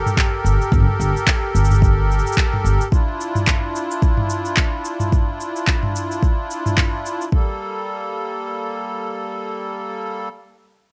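A small, lightly reverberant room frames this wistful, autumnal folktronica excerpt in G dorian at 109 BPM with a gentle sixteenth-note swing, where a sweet, reedy accordion with light tremolo tuning sits up front holding sustained Gmadd9 and Dmadd9 chords, while a tape-warm organic electronic kit of cabasa, handclaps and toms and a deep electronic kick, both re-recorded in a large room and placed up front, play until 7.3 and 7.4 seconds respectively, and a dark, woody pizzicato upright bass on steel strings, colored by tube saturation, sounds a low G from 0.4 to 2.8 seconds.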